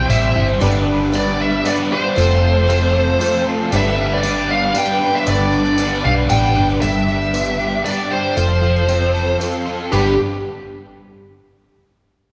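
Folk rock with a heartland edge in a straight 3/4 at 116 BPM, this open-road excerpt in G mixolydian sets a dark, distorted lead guitar melody up front over a crunchy, double-tracked overdriven riff guitar with phaser, a round, punchy hollow-body electric bass, a boxy picked acoustic guitar in the background, a very quiet reedy tonewheel organ with fast rotary and key click, a woody, slightly detuned upright piano, and a jingly, close tambourine, all bathed in a concert hall's 2.1-second reverb as the chords move from C to G and F.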